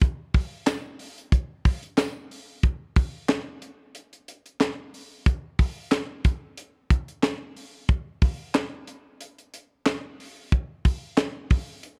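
A tight funk drum kit opens this gritty, strutting funk excerpt, with kick drum, snare, hi-hat and handclaps sitting up front in a small acoustic room. The snare is tuned high and the kick is tight, giving the groove a mid-forward bite in a steady 4/4 with a light swing on the sixteenths. At 0.7 seconds a bright, jingly tambourine slips in very quietly, close and dry, and it drops out again at 2.2 seconds. From 2.6 seconds the piece moves into a new section that carries the drums on alone until the cut at 12.0 seconds. The production is dark with little reverb, keeping the sound close and dry.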